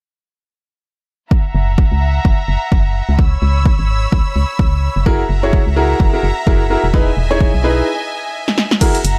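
A swung 4/4 groove at 128 BPM, with 58% swing on the sixteenths, drives this euphoric, uplifting piano house excerpt in F# mixolydian, built on an overdriven, dry, punchy electronic kick that sits up front from 1.3 s. Beneath it, a hollow, organ-like FM bass with a fast, percussive attack and dark, decaying tone adds tube saturation and pumps with the sidechain, while a bowed studio string ensemble holds sustained chords high above, biting and earthy with light vibrato, softened by a low-pass filter and also breathing with sidechain pumping. The harmony moves through F#7, C#m7, F#9 and Emaj7. At 5.1 s a clear, boxy grand piano enters with a short-sustained riff, touched with delay and the same pumping. During a brief break, a punchy analog drum machine bursts in at 8.5 s with an overdriven snare, hi-hat and crash for a drum fill, all set in a digital ambience.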